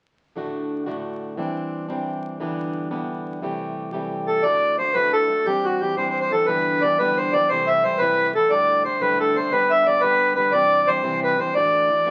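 Lively and cheerful, this short excerpt from a Celtic folk piece moves in a straight 6/8 at 118 BPM in D mixolydian, opening with a dark, boxy fingerpicked acoustic guitar in a swing style that plays alone until the reedy, hollow accordion enters up front with the melody at 4.3 s. The guitar keeps to a low accompaniment beneath the tune, circling chords such as D, Cadd9/E, G6 and C6 before settling on Dadd9. A wet club reverb and the crackle of a very old 78 rpm record give the sound an aged, club-like character.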